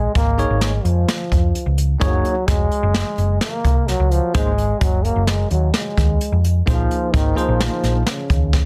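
Dense, heavily limited and lightly reverberant, this intricate, driving progressive instrumental in 5/4 at 129 BPM in Bb minor, cut from a longer piece, sets a dark, round, picked hollow-body electric bass and an up-front brushed jazz kit with a boomy kick against a barky, bell-like tine electric piano bathed in plate reverb and a breathy, whispered trombone line with scooped notes and light vibrato, treated with digital delay and plate reverb, over a Bbm7, Gbmaj7, Ab7(no3) progression.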